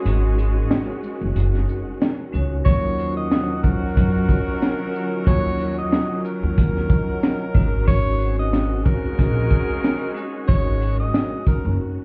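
Heard as if muffled through a wall, with vinyl crackle and the reverb of a club, this moody, dark boom-bap hip-hop excerpt rolls along at 92 BPM in 4/4 with a swung sixteenth-note feel. A crunchy breakbeat kit sits up front, its punchy kick, high-tuned snare, hi-hat and shaker saturated and gritty with a rolled-off top, while a woody pizzicato upright bass holds down the low end. Hard-mallet vibraphone supplies metallic, ringing accompaniment coloured by cassette tape and plate reverb, as a distant, lush string section sustains bowed chords with portamento in the background. A mellow horn section adds octave-doubled stabs with slapback echo. At 2.6 seconds a breathy, close-miked tenor saxophone takes the jazz-style melody, just as the harmony moves from Ab7sus4 to Ebm7 at 2.7 seconds before returning to Ab7sus4 at 7.6 seconds.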